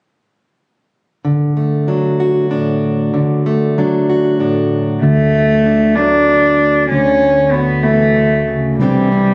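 Captured on a phone in the room, this short, hopeful and anthemic folk fragment sits in a roomy, moderate large-studio reverb with a club-like ambience and audible compression. A fingerpicked, plugged-in steel-string acoustic guitar opens alone at 1.2 seconds, its full-bodied jumbo tone placed up front and ringing out over a D chord. At 5.0 seconds a single bowed cello takes the melody, its nasal, reedy gut-string voice carrying a period-style character. A fingered electric bass arrives at the same moment, dark, round and punchy with an amped edge, sitting low and quieter beneath the other two parts. The straight 6/8 passage moves to a Cadd9 at 8.8 seconds before the excerpt breaks off.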